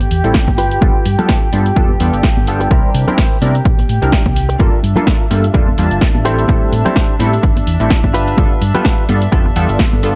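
A layered, tape-warm electronic kick sits up front in this funky, nostalgic filtered disco house excerpt at 127 BPM in 4/4, with a 56% swing on the sixteenths. Beneath it, a dark, round hollow-body short-scale bass carries the low end through the whole clip, while an overdriven analog drum machine adds a punchy snare and hi-hat, and close, dry congas and egg shaker with hard hands sit in the background. A bright, twangy direct-recorded clean guitar riff plays from the start and stops at 9.5 seconds, and a detuned sawtooth polysynth comp with fast attack and wave-folded edges enters at 0.2 seconds, treated with chorus and phaser. A nasal, reedy chamber string section with a gut-string, period-style tone holds sustained chords over the changes from Am7 through G7, C7 and Gm9. The bass, guitar, strings and synth pump with sidechain compression and run through a low-pass filter sweep that spans the entire passage, set in light reverb.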